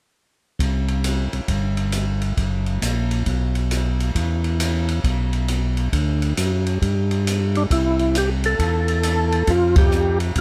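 Bluesy and soulful, this soul jazz organ trio excerpt swings at 135 BPM in 4/4, with a thick, lightly overdriven tonewheel organ carrying the bass line through a slow rotary speaker with audible key click, beside an up-front acoustic jazz kit of hi-hat, ride, boomy kick and dark cymbals. At 7.6 seconds a second tonewheel organ enters with the melody, its percussive second-harmonic attack colored by chorus vibrato, overdrive and slow rotary. A band accent lands at 9.7 seconds, and the close, detailed, nearly dry sound keeps every part present and natural.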